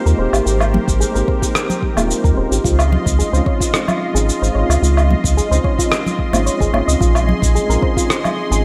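Sunset chillout at 110 BPM in a straight 4/4, relaxed and blissful, heard as a short cut from a longer piece. A clean tine electric piano carries the accompaniment through tape and slapback echo, while a lush, nasal sawtooth pad holds detuned unison chords with chorus and a bright top. A soft, round pluck traces dark arpeggios in the background, and an up-front sine sub bass sits deep and mellow beneath the harmony. Gritty, sampler-style electronic cabasa, woodblock and rim click tick along, joined at 0.7 seconds by dry, close congas played with hard hands, and at 0.9 seconds by a layered, deep electronic kick. The chords move from Abmaj9 to Dbmaj9 and settle on Bbm11, all framed by a concert hall reverb that gives the mix a big arena sound.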